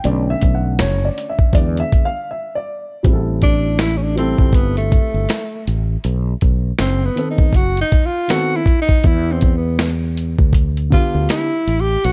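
A dark, warm small-room sound frames this smoky, cool jazz-hop excerpt at 80 BPM in A minor with a swung 16th feel, where a woody, mellow upright piano takes the opening solo over a gritty, compressed sampler-style drum kit with a thumpy kick and an up-front fretless electric bass, before a breathy, close-miked tenor saxophone enters at 3.4 seconds to carry the melody with soft-attack subtone and vibrato.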